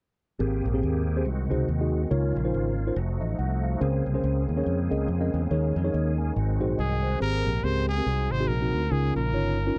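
A brilliant, punchy trumpet with scooped notes and tape echo enters at 6.8 seconds to carry the melody of this jubilant, uplifting uptempo gospel passage in swung 4/4 at 141 BPM in Ab major, over a round, up-front fingered electric bass, a mellow tine electric piano, a reedy tonewheel organ with key click and fast rotary speaker holding sustained chords until 7.2 seconds, and a dark, distant French horn section sounding very quietly beneath, the whole heard in a dry, close 1970s-style studio sound.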